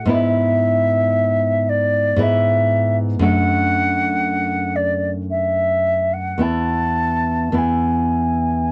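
Heard through worn, warbling cassette tape with pitch drift and light reverb, this tender romantic duo in a rubato 3/4 at 52-60 BPM pairs an airy concert flute, singing the melody with vibrato and a crisp attack, with an up-front nylon-string guitar fingerpicked on fresh strings with a deep classical tone, moving from E/G# through D/F# to E over a brief fragment of about 8.7 seconds cut from a longer piece.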